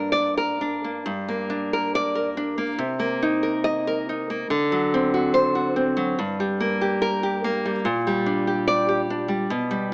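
A solo nylon-string classical guitar opens at once in G minor, its bright, full-bodied tone fingerpicked and placed up front in this short cut from a longer romantic piece. The mood is melancholic and passionate, moving at 71 BPM in 2/4 with a rubato feel that lets the pulse breathe. The playing spans from a low G2 up to Eb5, and after a brief opening passage the music shifts into a new section at 1.1 seconds. The harmony moves from G minor through C minor seventh and D seventh before settling back on G minor around 6.2 seconds, then closing on G minor over B-flat. A moderate concert hall reverb surrounds the instrument, yet the whole recording carries a thin, boxy AM radio character that gives it a faded, old-broadcast quality.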